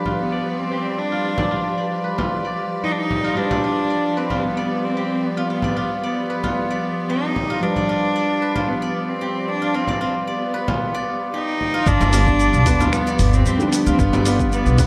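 This hypnotic, earthy organic downtempo excerpt opens with a dark, mellow felt-muted upright piano in the background, carrying audible action noise, vintage 12-bit sampler grit, sidechain pumping and tape echo, alongside a bowed chamber string section playing warm sustained chords sul tasto with light vibrato and the same pumping. A fingerpicked steel-string zither adds ringing, silvery arpeggios through a low-pass filter and tape echo, while a deep, distant frame drum struck with hard hands sets a straight 4/4 pulse. Up front, a single bowed cello carries the melody with a biting, nasal tone, an airy bow and a touch of tape echo. At 11.9 seconds the low end fills in: a woody, thumpy pizzicato upright bass with sidechain pumping, a gritty, compressed sampler-style soul kit of cabasa, finger snaps, hi-hat and toms, and a punchy electronic kick tucked in the background. A plate reverb and small-room ambience soak the mix in a dreamy haze.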